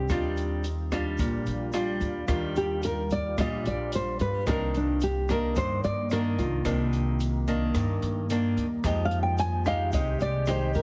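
Two up-front nylon-string guitars open this melancholic, smooth bossa nova excerpt: a thumb-plucked classical melody rings out over a small, fingerpicked accompaniment, joined by a woody, growly pizzicato upright bass and a glassy, ethereal FM pad with ensemble chorus and reverb drifting in the background. From 0.1 seconds a dark, small-room jazz kit adds hi-hat, rim click and a punchy kick, while a grainy tube shaker sits far back. The harmony moves through Ebmaj9, Cm9 and Fm9, and the whole sound carries light reverb and a heavily compressed, radio-like sheen.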